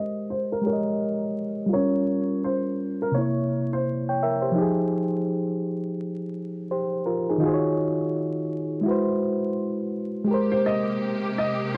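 Upright piano and reedy electric piano open together in this cosy, dreamy hip hop cut at 84 BPM in Ab major, the 16ths swung, the electric piano sitting up front with a mellow cassette-tape tone while the woody, boxy upright carries the melody with audible action noise and short sustain until 4.0 seconds. Extended jazz chords such as Abmaj9, C7b9 and Ebm11 drift by under light room reverb and vinyl crackle, everything softened by a low-pass filter. At 10.3 seconds a lush, bowed string section with expressive vibrato adds sustained chords, just before the upright melody briefly returns.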